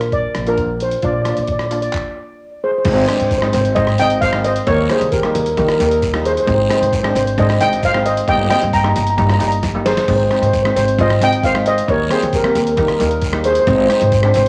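This home cassette recording sits in a snug booth with moderate studio ambience, and the track is clearly cut from a longer piece. It is a carefree, bouncy calypso in Eb major at 133 BPM in a straight 4/4, moving mostly between Ab and Eb chords. Up front, a lead steel pan carries the melody with a mellow, shimmering tone from soft rubber sticks, colored by cassette tape and analog delay. Beneath it, a brighter double seconds pan struck with hard rubber sticks fills in the accompaniment, while a pizzicato upright bass on gut strings gives a woody, thumpy foundation. A sampler-style boom bap kit, compressed, pitched down, gritty and re-recorded in a large room, adds kick, snare, hi-hat, rim clicks, handclaps, crash and splash cymbals. The band stops at 2.0 s, a close, raspy guiro joins at 2.9 s, and a drum fill at 9.6 s pushes the groove forward.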